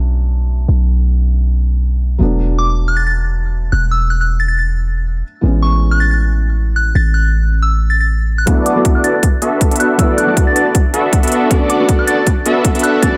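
A light reverb surrounds this dreamy, emotional future bass passage at 158 BPM in a swung half-time feel, where a felt-muted upright piano with audible action noise plays dark, intimate accompaniment over a deep, boomy 808-style bass, both pumping against the sidechain. From 2.6 seconds a pure, warbling FM synth bell carries the melody with chorus and delay, and at 8.5 seconds the bass drops out as huge, detuned supersaw chords enter up front alongside a hard-clipped kick and crisp hi-hats for a build-up. Filter sweeps on the supersaws and the bell drive that build-up as the chords move from Bm7 through E7sus4 and Amaj7 to D6 and back to Bm7.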